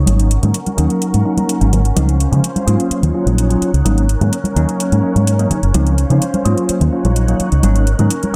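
Set in a light digital ambience, this funky, feel-good filtered disco house excerpt in Ab mixolydian moves at 127 BPM in a straight 4/4, with a filter sweep running through the whole 8.4 seconds. Up front sits a foam-muted fingered electric bass under a low-pass filter, while a clean, bell-like tine electric piano with phaser adds accompaniment and a lush sawtooth string machine, carrying ensemble chorus, vintage 12-bit grit and a slow attack, holds sustained chords that cycle Ab9sus4, Dbmaj7 and Ebm7. Metallic, overdriven electronic hi-hats and close acoustic congas and tambourine, filtered and set in the background, keep the groove moving.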